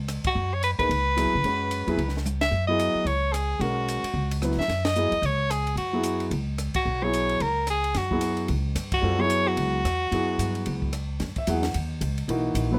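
Set in a light reverb, this short cut from a longer modal jazz piece swings with an open, hypnotic mood over sustained suspended harmony. A bright soprano saxophone leads up front with vibrato and a soft attack, while a woody, thumpy pizzicato upright bass on gut strings and a natural-sounding concert grand with deep bass fill out the accompaniment. A compact cocktail kit with dark cymbals, a high-tuned snare and a punchy kick sits dry beneath them, adding a fill at 2.3 seconds amid recurring band accents, and the saxophone drops out at 10.9 seconds, just before the harmony shifts at 11.2 seconds.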